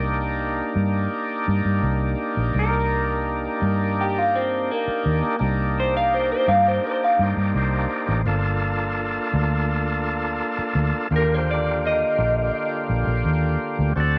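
Brooding and soulful, this straight-eighth soul blues moves at an unhurried 84 BPM in 4/4, cut from a longer piece. An overdriven tonewheel organ sits up front with a thick, gritty tone, audible key click and a slow rotary speaker. Beneath it, a vintage fingered electric bass gives a dark, round, punchy low end, foam-muted and also placed up front. At 2.6 s an electric guitar through a small old amp takes the melody as a solo, its picked, slightly broken-up, lo-fi sound coloured by a phaser. The harmony rests on Cm7 before moving to Gm7 at 8.3 s and Ebmaj7 at 11.1 s, and a light digital reverb gives the whole a modest sense of space.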